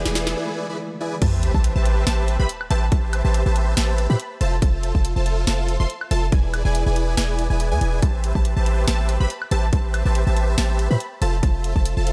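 Lush and emotional, this future bass excerpt in A minor moves at 141 BPM with a swung, half-time feel, opening on a brief build-up where a worn, slightly out-of-tune tine electric piano, a trap kit fill with a riser and sub drop, and a break over E7 lead into the drop at 1.2 seconds. Throughout, a huge, detuned supersaw riff, present from the very start, pumps with sidechain and delay alongside a deep, boomy 808-style bass, and from the drop they are joined by a hard-clipped electronic kick up front, a sharp snare, bright hats, crash and woodblock, while a punchy unison pluck with phaser plays arpeggios in the background. Chords cycle through Am9, Fmaj7 and E7 in a digital ambience, with the kick stopping at 11.8 seconds just before the cut.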